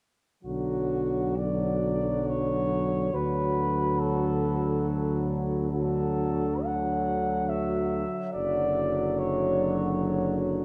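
Moving at a rubato 68 BPM in an uneven 3/4, this melancholic, yearning hymn-like classical excerpt for brass band in B minor sets a dark, roomy solo cornet melody up front over a smooth French horn section second line, a clear solo trombone and a soft-attacked trombone section in the background, and a warm tuba bass, all played with light vibrato from 0.4 s to about 10.6 s and washed in a vast, echoing cathedral reverb as the harmony moves from Bm to D/F#.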